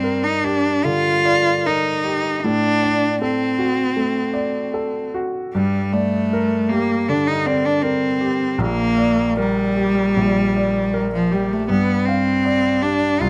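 A bowed cello carries the melody from the first moment, its tone rich and smooth with a steady vibrato, played by a single musician captured close and up front in the mix. This is a romantic classical duo in G minor, solemn and yearning in mood, moving at around 78 BPM in 4/4 with a rubato feel where the beats stretch and give. A grand piano plays the accompaniment throughout, its sound warm, polished and present, spanning from deep bass notes up into the treble while the cello sings in its middle register. The harmony moves from G minor to D7 over A, returns to G minor, shifts to G minor over B-flat, and settles on an open G fifth near 11.7 seconds. Light reverb and close, detailed microphones give the pair an intimate, finely etched sound across this 13.3-second passage, cut from a longer piece.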